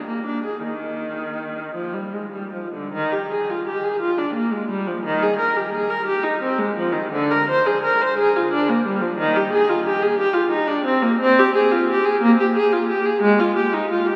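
This is a classical, baroque-style suite movement for unaccompanied viola, a flowing and introspective piece in E-flat major. It moves in a lilting 6/8 at roughly 49-61 BPM counted in dotted quarters, with a rubato feel that lets the pulse breathe. A single bowed viola carries everything from 0.0 to 14.2 seconds, ranging from D3 up to C5 with a smooth, even tone and gentle vibrato. A short opening section gives way at 2.9 seconds to a longer second section. The viola sits in a cavernous cathedral acoustic with a long, lingering reverb tail, heard from further back in the room, so each note blooms and hangs in the air. The recording is a portion cut from a longer piece.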